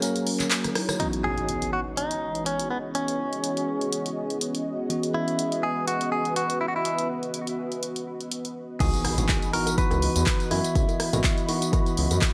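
A bright, twangy clean electric guitar, recorded direct and sitting up front, carries the picked melody from 1.0 seconds on, trailed by tape echo in this late-night deep house excerpt. Beneath it, a worn, slightly out-of-tune tine electric piano plays stabs through its built-in speakers, also with tape echo and sidechain pumping. Alongside the piano, a smooth analog pad holds sustained, chorused chords roughened by vintage 12-bit sampler grit. A punchy analog drum machine, re-recorded in a small room, lays down crash, handclaps, hi-hat, rim click and tambourine, while soft-handed congas and bongos sit in the background, heard briefly at the opening and again near the close. A very quiet, moody ambient pad adds a dark, full-bodied layer until the drop at 8.8 seconds, where an electronic impact hits again, a tape-warm layered kick arrives, and a mellow synth bass glides with portamento through the low end. 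The swung sixteenths and echo-chamber reverb give the piece a cozy, after-hours glow.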